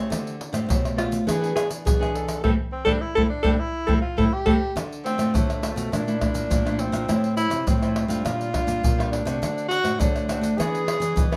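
A breathy, close-miked alto saxophone opens this bittersweet samba and choro excerpt with a mellow, subtone melody touched by vibrato, over two fingerpicked nylon-string guitars, one full-bodied and deep in the classical manner carrying the chords, the other small with fresh strings holding down the bass. A tight surdo, pandeiro, tamborim and tube shaker sit up front in a small acoustic room, played with soft hands at a moderate, straight four-beat pulse. A breathy tenor saxophone joins as a second line at 2.7 seconds, and the band hits accents together before a drum fill leads into a new section. The alto falls silent at 4.5 seconds, and at 4.8 seconds the tenor takes a yearning jazz-style solo, its scooped notes and light vibrato out in front as the harmony moves through lush major-seventh and dominant chords. Light reverb gives the ensemble a gentle sense of space through to the cut.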